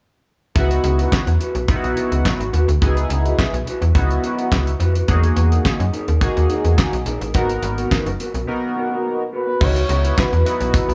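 Late-night and danceable, this early-eighties boogie funk excerpt rides on a snappy, metallic slap-like FM bass and a dry, damped 70s drum kit with fat snare, tight kick, hi-hat, handclaps and crash cymbal, while a glossy, retro chorused polysynth with phaser and filter sweep holds sustained C#m11, Emaj9#11 and G#m9 chords, a dark, clean, fingered electric guitar riff shimmers under lush chorus, and a smooth, expressive sawtooth synth lead with vibrato enters at 9.4 s, all in a small room with light reverb.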